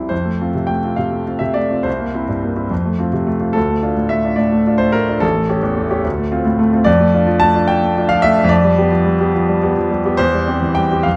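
The music moves in 6/8 with free rubato, its dotted-quarter pulse drifting between 66 and 75 BPM. This is a romantic classical character piece for solo piano, hopeful and passionate in mood, and it is cut from a longer work. The piano is a clear baby grand that sits intimate and up front, reaching from A1 to A5, tuned to A4 = 441 Hz, with its action noise audible beneath a natural tone. The passage opens in F major, touching C7 and D minor before A7 and Dm7 lead toward C major from 6.9 s, where Dm/F and G7/F settle onto C/E at 10.2 s. Close, detailed microphones capture the instrument inside a moderate recital hall reverb of 1.6 seconds, and a faint mains hum lies underneath.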